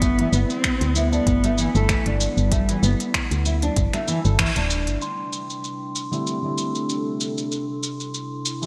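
A woody, round FM bass sits up front in this mystical, earthy organic downtempo excerpt at 96 BPM in 4/4, with a light 16th-note swing, breathing with sidechain pumping alongside a deep, layered electronic kick until the bass drops out at 5.0 seconds. An expressive bowed cello with vibrato and portamento carries a dark melody through a trailing delay until 3.4 seconds, while a fingerpicked, full-bodied nylon-string guitar plays arpeggios bathed in lush chorus and digital delay. Beneath them, a warbling, lo-fi tape-like pad holds sustained chords in the background, gritty with vintage 12-bit sampler character and breathing with sidechain pumping. An up-front organic electronic kit of finger snaps, crisp hats and shaker carries gated reverb, and a metallic bronze singing bowl adds a meditative, slowly beating ring throughout. At 6.1 seconds a mellow, felt-muted upright piano enters with intimate accompaniment, filtered and pumping, as the harmony moves from G6 through D7sus4 to C within a bright 1980s-style digital production and a lush hall reverb.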